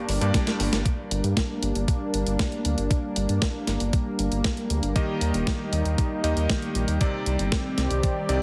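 Italo disco at 117 BPM in G minor, nostalgic and bittersweet, cut from a longer piece, where a lush, detuned sawtooth pad holds chorused chords over a round, deep analog bass with a ring-modulated edge, a thumpy electronic kick, clean 12-bit drum-machine hi-hat and snare re-recorded in a large room, and delayed stabs from a clangy electric grand piano that sounds at the start and returns at 5.0 s as the chords move from Gm to Eb and Cmadd9, all wrapped in light digital reverb and a heavily compressed radio sound.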